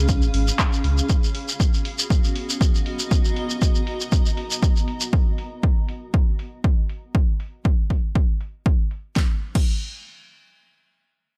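Deep house with a late-night mood opens with a deep, sine-toned sub bass pumping beneath a cloudy, detuned granular pad that blurs in its own reverb, while a punchy, overdriven kick sits up front alongside a grainy, close shekere and an overdriven kit of fat snare, handclaps, crash and low-pass-filtered hi-hats; the bass drops out at 1.0 s, the pad and shekere stop at 5.1 s, and the drums carry on alone until 9.7 s.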